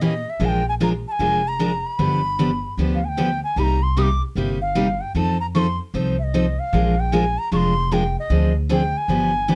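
A dark, warm mix with light reverb frames this charming, playful snippet of acoustic string swing in the jazz manouche style, cut from a longer piece. Up front, an airy bamboo bansuri carries the melody with a reedy edge, soft attack and vibrato, while a full-bodied picked steel-string guitar comps through Bb7, G7, Cm7 and F7 with audible finger squeak. A woody, thumpy pizzicato upright bass on gut strings anchors the swinging groove from 0.0 to 9.6 seconds.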